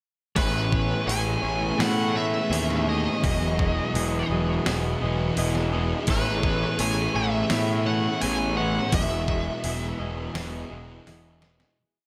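Dreamy and wistful, this short shoegaze and dream pop piece sets a biting lead guitar melody, overdriven and trailed by tape echo, over a punchy, driving fuzz bass and a thumpy, overdriven 8-bit drum machine placed up front. A thick fuzz guitar with ensemble chorus sits in the background while a bright, compressed clean electric guitar with reverse reverb joins it in strumming chords with whammy-bar dips. A very quiet lush string machine holds sustained chords, and a shimmering, octave-doubled twelve-string acoustic adds fingerpicked arpeggios, all under light digital ambience. The lead stops at 11.0 seconds as the track fades from 8.9 seconds, closing on a drum fill at 11.1 seconds.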